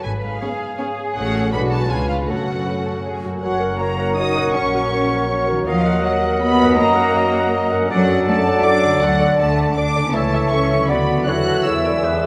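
Cinematic in 3/4, magical and mischievous, with veiled, con sordino violin sections carrying the melody and a second line over ringing harp arpeggios, dark muted violas in the background, and distant cellos and double basses. At 3.4 s a hollow flute joins warm oboe, clarinet and bassoon lines and very quiet horn chords, and a bright, metallic hard-mallet vibraphone touches in at 11.9 s, heard in a wet scoring-stage reverb as the excerpt breaks off.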